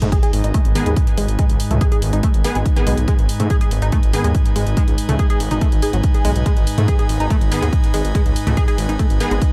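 Inside a digital ambience, this hypnotic, driving peak-time techno passage opens on a layered techno drum kit of hats and toms and a thick, menacing detuned saw bass, with a heavy, tape-warm electronic kick drum landing up front at 0.1 seconds and both parts pumping against it. A tight sequenced synth riff coloured by chorus, phaser, overdrive and delay runs throughout beside an airy, breathy pad, while a mellow analog drone evolves barely audibly from 0.7 seconds. A very quiet electronic impact marks the start, and an aggressive, bright rave stab with reverb and delay cuts in at 0.8 seconds, then returns at 7.5 seconds.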